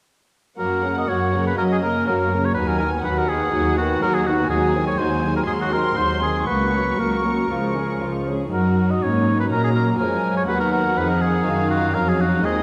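From 0.6 seconds, muted violins carry a spirited, cheerful melody with light vibrato, while a clear, up-front oboe and a lush second violin section trace second lines above muted violas and an up-front cello section in the bass. This quick, rubato classical-period movement for symphony orchestra, cut from a longer piece, keeps its strings dark and veiled under con sordino, set against the oboe's clear classical tone. The whole passage sits in a moderate scoring-stage reverb, moving from the home chord through B/D# and G#7/D# before returning home near 8.5 seconds.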